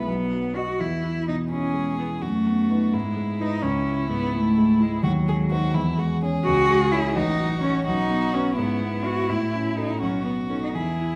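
Cheerful and spirited, this brisk classical-period movement for piano trio moves in a straight 6/8 and is cut from a longer piece. A warm, close violin carries the melody in a narrow middle range with smooth, even bowing and vibrato. A rich, focused cello, bowed by one player and placed up front, sings a second line beneath it with its own vibrato. The grand piano, also up front, supplies a dark, mellow, vintage-sounding accompaniment with long sustain that reaches down into a deep bass, and all three instruments play together from 0.0 to 11.2 seconds. The harmony moves through familiar cadential steps, touching the relative minor before turning back toward the home chord, all set in a recital hall reverb with a 1.4-second decay.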